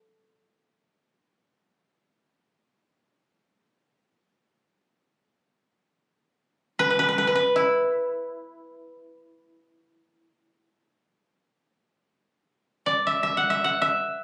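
A solo koto, played with fingerpicks, carries this short, calm and austere cut from a longer piece of Japanese traditional chamber music, moving in free time within an E suspended pentatonic scale between E4 and F#5. Its woody, dry tone sits up front, heard through a phone recording made in the room, where moderate studio reverb meets a club-like ambience. A single passage is stated and then returns at 11.4 seconds, running to the end at 14.2 seconds.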